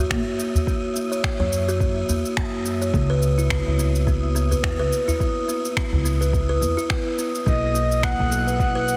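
Warm and meditative, this short cut of organic downtempo sets a buzzing, woody kalimba playing close, dry arpeggios over a thumpy pizzicato upright bass with tube saturation and sidechain pumping, while an airy, wind-like tuned noise texture hovers alongside them. Soft electronic kicks and overdriven electronic finger snaps and shaker carry a swung groove in a small room, joined at 0.5 seconds by a deep udu in the background. At 7.5 seconds a breathy, flute-like synth lead arrives with vibrato, subtle chorus and delay, all within a lush hall and a heavily compressed, radio-like sound.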